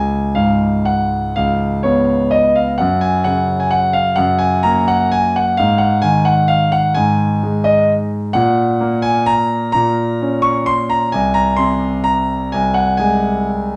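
A brilliant concert grand piano plays alone in this graceful, elegant classical waltz in 3/4, its deep bass and long sustain carrying a rubato, unevenly paced lilt through chords moving from Db7 to Gb and Ab, heard from further back in a large, reverberant studio in a passage cut from a longer piece.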